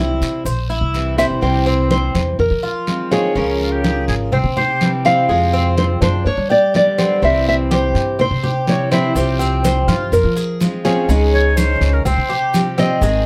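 A straight 4/4 groove at 124 BPM drives this sultry Cuban son and guajira excerpt, where a small, fingerpicked nylon-string guitar carries the melody over dark picked steel-string accompaniment with finger squeak, metallic double-string tres arpeggios, a woody pizzicato upright bass up front, raspy guiro, bright hard-handed congas and grainy maracas in the background, while a breathy, reedy jazz flute with vibrato and chiff adds a second line at 3.6 and 11.3 seconds, all in light reverb over chords moving from C through Fm7, Db6 and G to Csus4.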